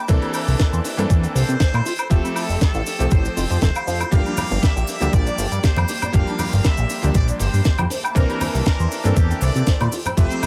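An echo-heavy studio mix carries this sleek, sensual nu-disco passage at 119 BPM in G dorian, cut from a longer piece, with a lightly swung 16th feel over chords moving from C13 to Fmaj9 and Gm7. An overdriven, thumpy electronic kick sits up front beside a fat, detuned analog bass with tube saturation and a filter sweep, while a tight funk kit with a high-tuned snare, hi-hat, cabasa and woodblock adds snap, and a bright, clangy electric grand piano pumps with sidechain compression and analog delay. A dark, clean electric guitar riff hangs in the background alongside very quiet bowed symphonic strings, a nasal muted trumpet section takes the melody from 1.4 s, and ringing, close maracas and congas join softly at 4.1 s.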